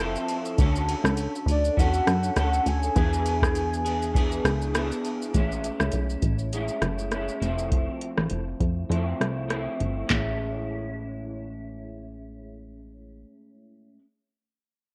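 An excerpt of nostalgic, laid-back indie bedroom pop at 101 BPM in A major opens with a twangy, slightly broken-up electric guitar through a small old amp, colored by ensemble chorus and vibrato, alongside a plucky, punchy analog bass, with a soft vintage rhythm box of deep kick, crisp snare, metallic hats, handclaps, rim click, shaker and ride entering at 0.2 seconds over a lightly swung sixteenth feel. A round, octave-layered synth lead with a soft attack carries the melody from 1.5 to 4.7 seconds through phaser, analog chorus and slapback echo, while the chords move through major sevenths and an E7. The rhythm box drops out at 10.3 seconds, and the whole mix sits in light reverb on worn cassette tape with warbly pitch drift.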